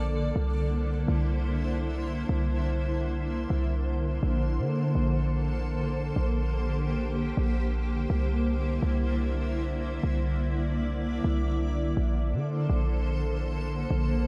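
A lightly reverberant, dreamy and blissful hip hop excerpt in Bb lydian moves at 124 BPM with a half-time feel, carried by a cloudy, evolving granular pad whose slow-attack chords blur into a full-bodied haze under its own built-in reverb. Beneath it, a deep, boomy 808-style bass with a sine tone and a noise layer strikes with a fast attack and a mellow decay, sitting up front alongside the pad for the whole passage. The harmony sways between C9 and Bbmaj9, settling on Bbmaj9 when a new section begins at 12.0 seconds.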